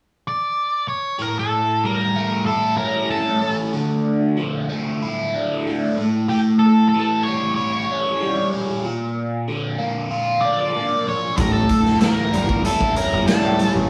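A live band in a stone room, about 1.1 seconds of reverb and a studio ambience, gives this short cut from a longer psychedelic rock piece its dark, trippy air at 94 BPM in straight 4/4, set in A phrygian dominant. An octave-fuzz lead guitar opens the melody at 0.3 seconds, dark and distorted with wah, sitting up front between G4 and D5. A biting, double-tracked overdriven guitar joins at 1.2 seconds with a phased riff spanning A2 to F4, moving through A7, Dmadd9, back to A7 and then Bb. At 11.4 seconds, as the chord returns to A7, the rest of the band enters: a growly, overdriven picked bass down to G1, a raw garage kit with a punchy kick, medium-tuned snare, hi-hat and a saturated, gritty, rolled-off top, and ringing high-tuned congas played with soft hands, barely audible beneath. The pumping room sound on the drums adds to the live, unpolished feel.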